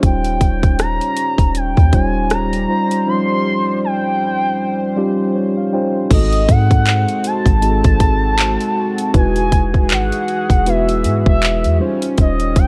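A mellow tine electric piano, a shimmering chorused pulse-width pad, a soft 808-style bass and a trap drum kit open this smooth, romantic piece of contemporary R&B together, with a gliding portamento lead joining a moment later. The tempo sits at 79 BPM in 4/4 with a swung sixteenth-note feel, and the drums, up front with a hard-clipped kick, metallic hats, handclaps, rim clicks and crash cymbal, give the groove a produced electronic edge. Beneath them the 808 bass is deep, round and dark, while the retro pad holds sustained chords that pump against the sidechain, and the clean electric piano comps up front as if through built-in speakers. The detuned, wave-folded lead sings the melody high with vibrato and chorus, sliding between notes. A break arrives at 3.1 seconds, an electric piano fill enters at 5.0 seconds, and at 6.1 seconds the harmony turns from lush D#13 colour toward G#7b9 and Emaj9 before returning to D#13. 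The recording is dry, yet coloured by worn, warbling cassette tape with a drifting pitch, and this fragment is cut from a longer piece.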